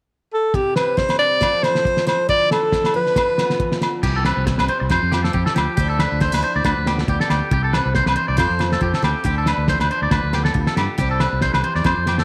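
A swung sixteenth-note groove at 138 BPM in 4/4 drives this carefree, danceable highlife guitar band fragment in C major, cut from a longer piece. A muffled, cloth-damped drum kit with a fat snare, tight kick and dark crash cymbal plays alongside ringing agogo bells and a bright, full-bodied steel-string acoustic guitar picking chords that cycle through C, F, Dmadd9 and Dm69. A breathy, whispered alto saxophone carries an intimate pop-style melody up front from 0.3 seconds, with soft attacks and scooped notes, before falling silent at 3.8 seconds. At 4.0 seconds the band moves into a new section where a twangy electric guitar, just slightly broken up and bathed in spring reverb and slapback echo, enters with picked arpeggios, while a round, fingered electric bass joins underneath. The progression now turns on G7/D, and the whole sits in a small room with light reverb, the drums carrying a gritty, lo-fi, rolled-off character.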